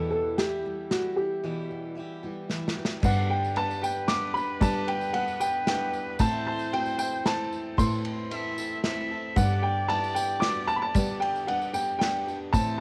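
Indie folk in 3/4 at 114 BPM, warm and uplifting, with a homespun cassette character: a dark, woody upright piano carries the melody up front through tape echo over a bowed cello bass with light vibrato and an airy sul tasto tone, while a boxy, swing-style picked acoustic guitar sits in the background and an unplugged kit played with bundle sticks adds dark cymbals and a tight kick. A bright fingerpicked dreadnought guitar colours the opening Em before a break at 1.4 seconds and a drum fill at 2.5 seconds. At 3.0 seconds the arrangement builds into G major, as a clear, vintage-toned trumpet second line with vibrato, a second short-sustain upright piano and a jingly, distant tambourine join, the whole set in a small, lightly reverberant room.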